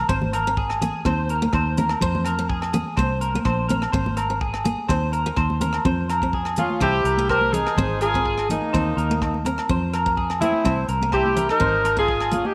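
A picked steel-string acoustic guitar with an auditorium tone and an electric guitar at the edge of break-up open this bittersweet, danceable highlife cut in F minor at 125 BPM. The acoustic guitar plays accompaniment, while the compressed, up-front electric plays arpeggios through lush chorus and slapback echo. Almost at once a round, dark fingered electric bass and a tight, dry funk drum kit of hi-hat, kick and rim click join in, with bright, high-tuned congas and ringing agogo bells sitting in the background. The harmony cycles through Ab, Eb5, Fm and Bbsus2 before settling into a loop of Fm, C, Ab and Eb5. At 6.6 s a clear, punchy horn section enters up front with the melody, tight and pop-styled with a light vibrato, and a moderate echo chamber reverb gives the group a sense of space.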